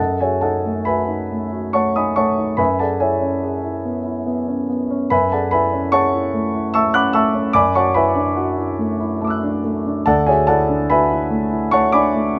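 Lightly reverberant and up-front, this wistful, mysterious impressionist solo piano passage, cut from a longer piece, has a natural, warm grand piano drifting through F# minor colours, from F#m6 to F#m9 and settling on F#m11/D at 10.1 s, at a rubato 72 BPM in 3/4 with uneven beats, spanning D2 to F#6 across its 12.4 seconds.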